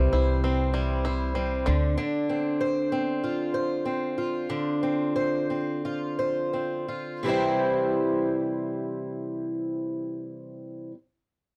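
A shimmering, octave-doubled twelve-string acoustic guitar carries this heartfelt, carefree pop excerpt in C major. It is fingerpicked up front with a boxy tone, audible finger squeak and a light swing at 82-97 BPM in 4/4. For the first 2.0 seconds a twangy bluegrass banjo picks percussive arpeggios, and a woody, thumpy pizzicato upright bass sits up front beneath it; then both drop away, and the guitar continues alone, slowing down until 7.3 seconds as the chords move from C to Dm7 and back to C, all in a dry, close 1970s-style studio sound with light reverb.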